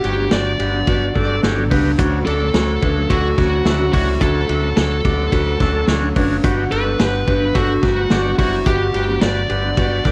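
A distorted, high-gain lead guitar sits up front in this nostalgic, bright piece of jangly indie pop at 108 BPM, carrying the melody over a Gmaj7 chord with plate reverb. Beneath it, a buzzy combo organ with light vibrato, a full-bodied fingerpicked steel-string acoustic guitar in the background, and a slightly broken-up, lo-fi electric guitar playing arpeggios through a small old amp fill out the harmony, while a round, deep dub bass and a gritty vintage drum kit with dark cymbals and a tight kick hold a straight 4/4 pulse. The recording has a modest small-room ambience and a worn cassette character, with warbling tape pitch drift and vinyl crackle.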